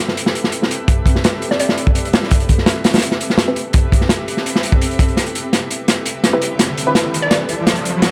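A crunchy, saturated breakbeat kit opens this atmospheric, raw slice of jungle-flavoured drum and bass, its punchy kick, snare and hi-hat sitting up front with a dark, rolled-off top in a small-room feel. Muted sawtooth dub chord stabs on an Am9 drift through a filter sweep, carrying lush chorus, dub echo and vintage 12-bit sampler grit, while a hollow, detuned square-wave pluck with a sub octave hovers in the background. The whole passage is a build-up under light reverb, with a drum fill arriving at 5.2 seconds and an electronic riser rising from 6.4 seconds.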